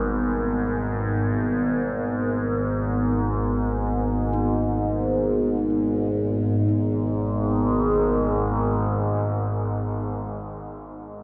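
An up-front, warbling drone with moving overtones sits low in the register, its vintage sawtooth-and-sine tone carrying chorus, phaser and its own reverb. This is an excerpt of dark, unsettling ambient music in free time and G# harmonic minor, resting on a G#madd9 chord. A deep, detuned analog pad with a sub octave holds sustained chords above it, while a mellow bronze gamelan-type metallophone rings out soft arpeggios with delay in the background, all washed in a huge ambient reverb with a 9.2-second tail and a shift into a new section at 6.7 s.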